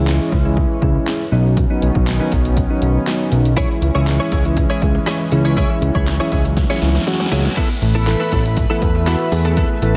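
A straight 4/4 dance-pop groove at 120 BPM drives this bittersweet excerpt, its deep house drum kit punching up front with an overdriven, layered kick and snare alongside handclaps, hi-hat and crash cymbal. Beneath it a fat analog bass, thick and saturated with a wave-folded edge, sits prominently in the low register, pumping with the sidechain along with the keys and pad. Soft, round electric-piano-like synth keys carry the accompaniment with a mellow chorused sheen, while a shimmering, retro pulse-width pad sustains detuned chords through C#m and Badd9. At 3.6 seconds a clean, direct-recorded electric guitar enters with a picked, compressed riff coloured by analog chorus. A drum fill at 6.6 seconds and a reverse cymbal and downlifter in the background lead into a new section at 7.6 seconds, where the harmony opens onto Asus2 and a grainy, bright egg shaker joins quietly, all set in light digital reverb.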